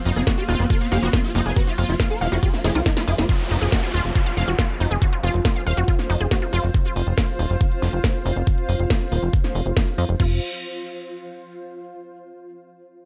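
Psychedelic trance with an intense, alien mood, cut from a longer piece: it opens on a drop where an overdriven, knocking kick and a punchy, funky sawtooth bass sit up front under cracking snare and metallic hats, while a swarming, aggressive rave lead hovers in the background, a detuned, wave-folded unison pluck riff runs with delay, a very quiet pulsing gated texture holds chords, and a cloudy, evolving granular pad blurs beneath, until a drum fill at 2.6 seconds gives way to an electronic downlifter from 3.3 seconds, and once the other parts fall away the pad carries on alone until 11.9 seconds.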